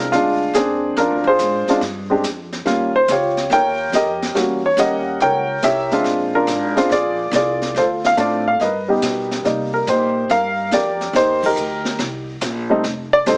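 An intimate baby grand piano with audible action noise carries the melody over a woody, thumpy pizzicato upright bass and a brushed drum kit with dark cymbals and a boomy kick in this sophisticated, swinging jazz trio snippet, which moves from a rootless Bb9 through Edim7 and Gaug colours to a band accent at 11.4 seconds, all heard through a heavily compressed, small-speaker radio sound with moderate studio reverb.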